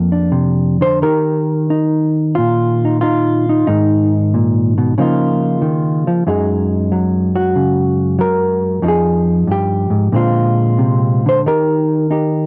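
Solo jazz with a playful, relaxed mood, this short cut from a longer piece moves at 92 BPM in a swung, rubato 4/4. A dark, clean, compressed hollow-body electric jazz guitar, fingered and up front, carries the whole passage, its range reaching from F2 to C5. It drifts through Ebadd9, Abm, Db69, Gb69, Fm9 and Bb9 before settling on Eb, all colored by the grain of cassette tape and a small, wet booth ambience in a homespun recording.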